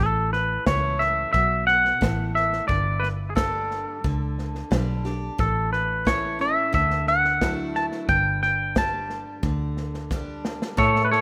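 A rough home-demo mix with light reverb and a small-room ambience frames this nostalgic, sunny honky-tonk and classic country excerpt at 89 BPM in a straight 4/4, moving through A, Gsus2 and Dadd9. An up-front, twangy clean electric guitar carries the melody over a bright, full-bodied picked steel-string acoustic, a dark, round, foam-muted fingered bass and a natural country drum kit with a punchy kick and medium-tuned snare that comes in at 0.3 seconds. A drum fill at 10.1 seconds leads to a brief entrance at 10.8 seconds from a background pedal steel guitar, played with fingerpicks and slide and treated with lush chorus.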